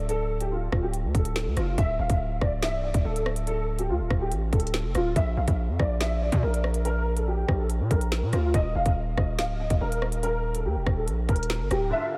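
A half-time drill groove at 142 BPM drives this ominous, tense hip hop excerpt, where crisp hats, a woody snare, rim clicks, finger snaps and a hard-clipped kick sit up front with a saturated, aggressive 808-style bass, while a dark, boxy concert grand piano with audible action noise carries the melody through chorus and diffuse delay over Dm, until the hi-hats and kick drop out at 11.9 s and a soft, felt-muted upright piano appears briefly in a small, lightly reverberant room.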